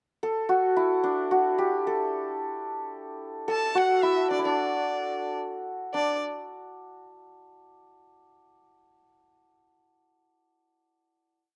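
Festive and passionate, this short Persian modal ensemble piece moves in 6/8 with a straight feel, its santur carrying the ornamented melody from the start in a bright, shimmering, ringing tone placed up front. At 3.5 seconds a single bowed violin joins with the same line and its own ornaments, rich and biting with vibrato and a smooth top, touched by a slapback echo, before dropping out at 6.2 seconds. Light reverb surrounds an outdoor recording with a dark upper edge, and the santur rings out on the final note that closes the piece.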